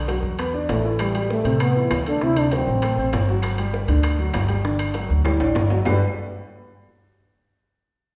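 A warm baby grand piano with audible action noise and a woody pizzicato upright bass open this lively, sunny Afro-Cuban jazz fragment at 197 BPM in G major, joined by tight, high-tuned bongos, ringing metal-shell timbales and background claves, while a dark, breathy trombone carries a whispered, intimate solo melody with scooped notes and light vibrato from 0.7 to 3.3 seconds, before a drum fill at 5.3 seconds, the ensemble set in a reverberant recital hall.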